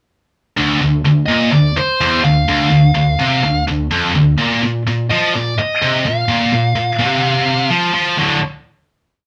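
A straight 4/4 metal pulse drives this short, complete piece, its mood dark and relentless as a scooped, bright, double-tracked rhythm guitar sits up front picking a single-note riff low in its range from 0.6 seconds, moving from D minor to B-flat before settling on a final D chord at 8.2 seconds. Above it, a second high-gain guitar with a warmer distorted tone enters at 1.3 seconds, picking a motif-based melody in balanced phrases high in its register. The two play together live in one room, wrapped in a wet studio reverb.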